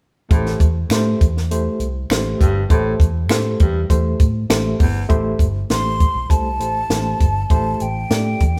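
Uptempo 1960s-style soul in A minor at 100 BPM, passionate and urgent, this fragment opens on an Am7 with a dry, punchy cocktail drum kit up front, a dark, foam-muted fingered electric bass, a barky, lightly overdriven reed electric piano with fast tremolo and a whispered baritone saxophone riff until 5.0 seconds. Finger snaps join in the background at 0.9 seconds, before a hollow, breathy jazz flute takes the melody from 5.7 seconds, all in a moderate stone room like a band playing live.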